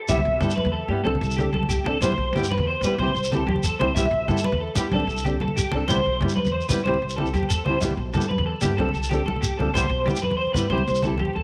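A moderate echo-chamber reverb with a 2.3-second tail gives this short cut from a longer highlife guitar-band piece a roomy, glowing sound. It sits in C major at 124 BPM, counted in dotted quarters in a straight 12/8, and its mood is warm and joyful. Up front, an electric guitar through a small old amp plays bright, twangy, slightly broken-up picked arpeggios, colored by ensemble chorus and tape echo. Beneath it, a thumb-plucked flamenco guitar adds acoustic accompaniment, and a pizzicato upright bass on steel strings sounds woody and growly. Thin-skinned, medium-tuned congas played with soft hands sit in the background, joined by a grainy, mellow shekere with live-room air, while the harmony keeps returning to Cmaj7 between Gsus24/C, Am7/C and F6/C.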